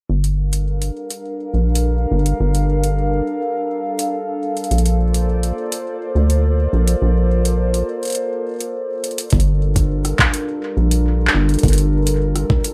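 IDM with a melancholic, eerie mood, where a warbling, detuned tape-like pad with chorus and built-in reverb holds sustained chords over a rubbery, saturated acid bass under a filter sweep and an analog drum machine of handclaps, metallic hi-hats and rim clicks, until a drum fill at 9.0 seconds brings in a gritty, thumpy kick at 9.3 seconds, all in a rough home demo mix with moderate studio reverb.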